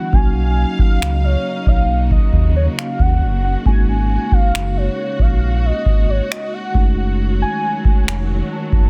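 Contemporary R&B in a romantic, tender mood, this short excerpt is cut from a longer piece and moves at an unhurried pace in a straight four. A velvety synth lead carries the melody with a smooth, dark tone, its chorus and vibrato shimmer set off by tape echo. Beneath it, a mellow tine electric piano plays clean accompaniment while a lush, woody string section holds sustained bowed chords close in the mix. From 0.1 seconds a deep, full sub bass with an added octave sits up front alongside a booming analog drum machine of finger snaps and a deep kick, with soft clipping grit on the snare. The harmony drifts through rich extended chords, starting on Cbmaj9#11, all wrapped in digital ambience and a dense, heavily limited modern master.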